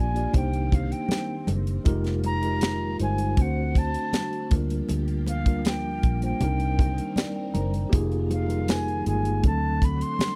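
A tight funk drum kit with a high-tuned snare kicks in at 0.2 seconds with a straight 4/4 groove, joined by soft-handed congas and, from 1.1 seconds, a very quiet, jingly tambourine, over a dark, round, foam-muted electric bass sitting up front. This smooth, cinematic excerpt of lush 1970s-style soul moves through extended chords like Cm9, Fm11, D7 and Gm7/D on a mellow, clean tine electric piano, which adds a fill at 6.8 seconds, while a swirling phased string machine with ensemble chorus warbles in the background. A distant, airy silver concert flute carries the melody with a straight tone and crisp attack, all in a dry, close studio sound.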